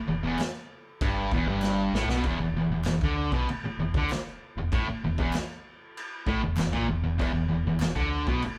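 A round, deep analog bass opens this short, swaggering garage rock cut at 0.0 seconds, with tube saturation giving its dark, sustained tone some grit. A fuzz guitar follows almost at once, playing the riff over an E5 chord with a bright, distorted, double-tracked sound that sits up front and is the loudest part of the mix. The raw drum kit comes in at 0.4 seconds with punchy kick, medium-tuned snare and crash cymbal, its saturated, rolled-off sound heard in a small, pumping room. A very quiet group handclap, crisp and close, enters alongside the drums. A drum fill at 1.6 seconds leads into the second section, and the band drives on at a straight 97 BPM in 4/4 with the raw feel of players sharing one room under moderate reverb.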